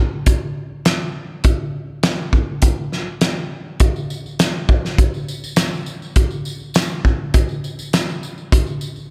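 A dry clip cut from a longer rock piece opens with a loose indie drum kit sitting up front, its acoustic studio room pumping around a fat snare, a punchy kick and hi-hat from 0.3 seconds. At a steady 102 BPM in straight 4/4, the mood is warm and nostalgic, and a jingly tambourine, heard in a small room well beneath the kit, joins at 4.0 seconds and carries on to 9.0 seconds, just past the drums.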